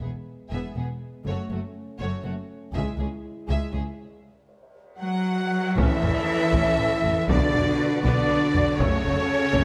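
In a steady, straight 6/8 pulse, this relentless, epic orchestral film-score excerpt opens on bowed violins carrying a focused, vibrato-rich melody over a second violin line, dark distant violas, mellow French horns holding chords, and lush cellos and double basses anchoring the bass. Bright, very quiet cymbal swells and tam-tam arrive near 2.7 seconds, and a taiko ensemble struck with hard sticks in a live room drives in just after, building a drum fill from 5.0 seconds, where a pure flute line and vintage-toned trumpet stabs join, that leads to a band accent at 5.8 seconds. There, a background string section adds sustained chords with expressive portamento, and round, soft-mallet timpani strike briefly near the end, all in light reverb with close, detailed miking.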